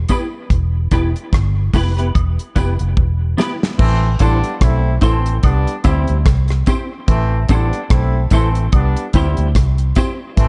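Laid-back and serious, this roots reggae excerpt moves at 73 BPM in A minor with a swung feel, built on a dark, round, punchy muted bass and a dry, damped drum kit up front, a clean, hollow-body electric guitar colored by ensemble chorus and tape echo, faint tambourine and woodblock in the background, and a distant horn section with light vibrato and tape echo entering at 3.8 seconds after a drum fill, as the chords shift from Em to alternating Am and C in a dark studio reverb.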